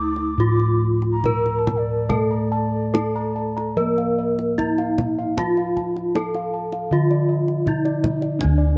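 Javanese gamelan in D pelog at 70-83 BPM, shimmering and stately, where an up-front bronze metallophone rings out the melody with wooden-mallet attack and beating paired tuning over a softer, padded-mallet metallophone accompaniment, round dark bossed gongs in the bass and a tight, close kendang, while a breathy bamboo bansuri with vibrato floats a second line until 4.3 s and higher bossed gongs add smooth arpeggios from 2.1 s, all set in light reverb within a dark, warm production in this short cut from a longer piece.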